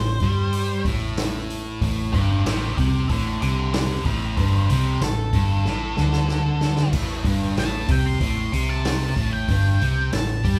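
Blues rock power trio with a southern rock lean, this smoky, brooding excerpt sets a dark, picked octave-fuzz lead melody over a bright, double-tracked fuzz guitar riff up front, a round, foam-muted fingered bass and a punchy vintage drum kit with dark cymbals that enters at 0.2 seconds and plays a fill from 5.7 seconds, all heard as a band playing live in one room.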